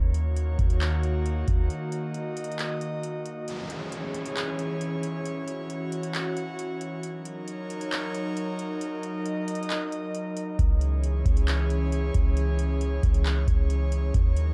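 Hazy and melancholic, this atmospheric cloud-rap excerpt moves at 135 BPM in a half-time feel in C# dorian, with an airy, breathy pad holding sustained chords through chorus, a low-pass filter and sidechain pumping over a shifting D#m7 and C#m progression. A booming analog drum machine with a deep kick, metallic hats and handclaps sits up front with overdrive, while a soft, round 808-style bass plays at the start, drops out at 1.7 seconds and returns at 10.6 seconds. A downlifter passes through the middle, and the dark production carries little reverb.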